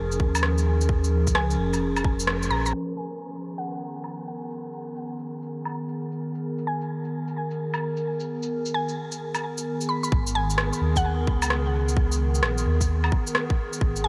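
A swung, shuffling groove of electronic shaker, woodblock and rim click, re-recorded in a small room, runs through this melancholic, ghostly future garage excerpt, with a tight, layered kick and a deep, rumbling detuned saw bass pumping beneath it. The kick drops out at 2.2 seconds, and the bass follows at 2.7 seconds, just after a band accent at 2.3 seconds, before both return together at 10.1 seconds. A warbling, nostalgic tape-like pad holds sustained chords with chorus and 12-bit sampler grit, pumping against the sidechain and passing through a filter sweep in the middle stretch, while a woody, round mallet-like synth pluck with chorus and analog delay enters at 1.3 seconds. The mix is dreamy and soaked in vast ambient reverb, darkened by a low-pass filter.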